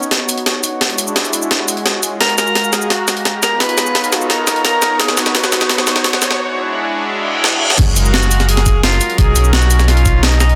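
Liquid drum and bass with an uplifting, warm mood, this passage from a longer piece opens as a build-up, with a lush, thick unison pad of detuned sawtooth voices holding sustained chords under a filter sweep, its vintage warble and bright chorus sheen pumping against the beat. A gritty, compressed breakbeat kit sits up front from the start, with a high-tuned snare, hi-hat, shaker and crash cymbal rolling through drum fills in a small room. Very quiet electronic risers and a reverse cymbal lift the tension, while a jazz-style tenor saxophone takes the solo melody from 2.2 s, its tone smooth on top and colored with vibrato, scooped notes and a digital delay. The drop arrives at 7.8 s, where a deep, full sine sub bass with an octave layer sits up front, joined by a knocking, layered electronic kick beneath the sax. Rich extended chords such as F#maj9 and Bmaj9#11 give the harmony a warm glow, all wrapped in moderate plate reverb and a dense, heavily limited modern master.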